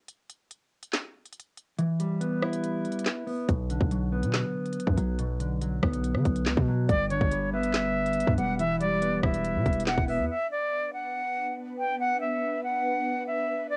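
A half-time drill groove at 141 BPM in 4/4 drives this menacing, tense hip hop excerpt in B minor, with an electronic kit of hard-clipped kick, woody snare, crisp hi-hats, rim clicks and handclaps sitting up front from the opening break. A mellow electric guitar, dark, clean and fingered with a compressed edge, enters at 1.8 seconds over Em and carries the accompaniment through the Bm, G and Em changes. A hard-hitting 808-style bass arrives at 3.5 seconds, punchy and heavy, a sine tone with a noise layer and a fast attack that decays. A silver concert flute takes the melody from 6.9 seconds, metallic yet breathy, with vibrato and a soft attack, and it continues into the closing section as the drums, guitar and bass fall away. There an ethereal pad of detuned sawtooth and triangle voices swells in slowly with ensemble chorus and its own reverb, while the cassette grain on most parts and a modest small-room ambience give the whole piece a home-recorded feel.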